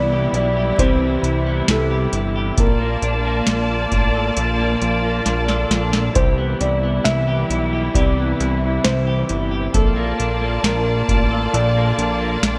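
A booming analog drum machine sits up front in this blissful, dreamy dream pop excerpt at 67 BPM in 4/4, its deep kick, tonal snare and metallic hi-hats entering at 0.3 s and breaking into a fill from 5.3 to 6.2 s. A fat, detuned sawtooth bass with a saturated filter pluck and a smooth, bowed studio string section hold sustained Cmaj7 and Bbmaj7 harmony, while a clean, picked electric guitar plays arpeggios through chorus and delay, and a soft, felt-muted upright piano carries the melody with its own delay. Tuned to A4 = 437 Hz, the bright 1980s-style digital production is bathed in a lush hall reverb.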